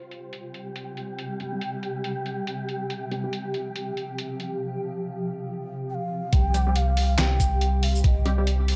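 Meditative and heavy, this deep dubstep excerpt at 140 BPM in a swung half-time feel opens with a blurred granular cloud pad holding sustained chords under an airy wind-like noise texture and gritty, pitched-down trip hop sampler drums with low-passed hats, shaker, handclaps and snare, while muted filtered dub chord stabs punctuate the groove through phaser, lush chorus and dub echo before a breathy bamboo shakuhachi melody with vibrato enters at 5.9 seconds and the drop at 6.3 seconds brings in a round, up-front sub bass and a thumpy, tape-warm kick, all set in a light reverb.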